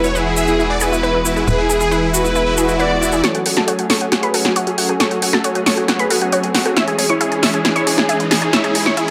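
This euphoric, soaring uplifting trance excerpt moves at a straight 136 BPM, opening with a tight, nasal sequencer bass and a grainy, close tube shaker beneath huge detuned supersaw chords carrying the melody through tape echo, an expressive bowed violin section on a second line with dub echo, a thick, airy pad with chorus, and a lush, wave-folded unison pluck playing arpeggios in the background. An electronic swell and riser enters at 2.5 s, and at 3.2 s the violins, bass and shaker drop away as an overdriven analog drum machine with a punchy snare and hi-hat comes up front with a fill, while a round, chorused analog pluck takes over the high second line. Filter sweeps on the supersaw and the arpeggio push the build-up onward as the harmony moves from Eadd9 through F#madd9 to C#m under a light reverb.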